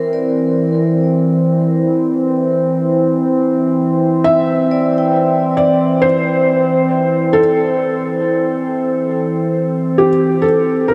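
Luminous and dreamy, this ambient excerpt drifts at 68 BPM in 4/4, opening on a warbling, evolving analog drone with chorus that sits up front and sustains throughout, while a metallic, ringing vibraphone fades in from the background with arpeggios washed in diffuse delay until 7.8 s. At 4.2 s a soft, felt-muted upright piano enters up front with an intimate, boxy melody, its action noise audible beneath its own diffuse delay. The harmony moves from Cadd9 through C/E to Am, and the whole mix is soaked in a huge reverb with a warm cassette-tape character.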